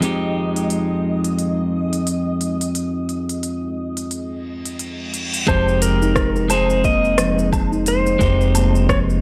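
A dark, slide-played lap steel guitar carries the melody of this hypnotic, warm organic downtempo piece in F minor at 88 BPM with a light 16th-note swing, entering at 5.5 s with volume swells and analog delay over a gently ringing steel tongue drum played with rubber mallets in the background, woody pizzicato upright bass, and a deep overdriven electronic kick. From the start, a clean, picked electric guitar with sidechain pumping and delay and a cloudy, detuned granular pad hold the Fm7 harmony over an overdriven organic electronic kit of cabasa, smooth hats, rim click and woodblock. Guitar and kit carry on to the end, while a reverse cymbal rises at 4.7 s and the pad drops out at 5.4 s, all in a dry, gritty mix.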